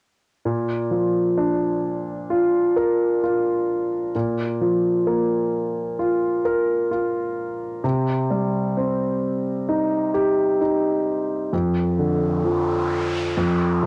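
Hopeful and tender, this slow pop excerpt in Bb major at 65 BPM sets an intimate concert grand piano, up front with deep bass, audible action noise, long sustain and a cassette-tape tint, playing accompaniment from 0.5 seconds through chords of Bb, Cm and Dm/F in a home recording with short studio reverb, before an electronic noise sweep enters at 11.8 seconds.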